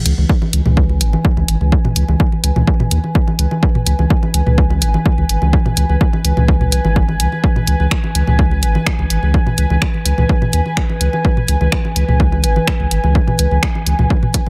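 An overdriven, punchy electronic kick drum sits up front in this cool, quirky fragment of minimal techno, driving a straight 4/4 at 126 BPM. Beside it, a thick, saturated sub bass moves between G#1 and D#2, its fast attack and sustained tone pumping against the sidechain. An overdriven analog drum machine adds finger snaps and hi-hat, while layered electronic congas and toms carry a tape-warm echo. A bright, detuned gated texture pulses in time around B4 with chorus and built-in reverb, and from 0.7 s a mellow, warbling pad with a nostalgic lo-fi character hovers near G#5, also breathing with the sidechain. The mix is echo-heavy, with light reverb and a digital ambience.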